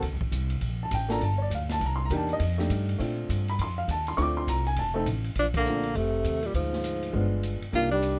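Dry, close and detailed, this playful small-group swing and bop fragment opens with growly pizzicato upright bass and a small-room drum kit of dark cymbals and boomy kick, adds a boxy, short-sustain upright piano at 0.8 seconds, and at 5.4 seconds brings in a breathy subtone tenor saxophone melody with scooped notes over a whispered, intimate trombone second line, with a band accent at 5.5 seconds.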